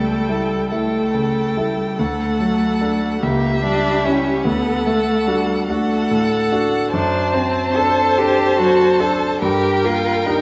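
Set in a wet recital-hall reverb, this slow, rubato romantic movement for piano quintet in D major, cut from a longer piece, drifts at 48 dotted-quarter beats per minute in 6/8 with a melancholic, yearning mood, as a distant violin sings the melody with vibrato and portamento over an equally expressive, distant viola accompaniment, a close, smooth and even cello line with vibrato carries the second voice, and a clear, up-front concert grand with a vintage tone and deep bass supports these rich bowed strings through shifting harmony that passes a C#dim chord and settles on G minor at 9.4 seconds.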